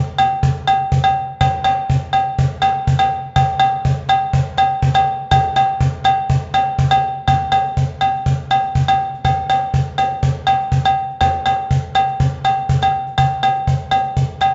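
A straight 4/4 highlife groove runs through this short, bittersweet fragment cut from a longer piece, with cajon and agogo bells both sounding from 0.2 s to the close at 14.5 s and the music moving into a new section at 7.3 s. The cajon is snappy and buzzing with snares, played with hard hands and carrying the distant air of a large room while still sitting up front. The ringing agogo bells stand slightly louder in a small-room space under light reverb, and the overall sound has a softened, rounded top end.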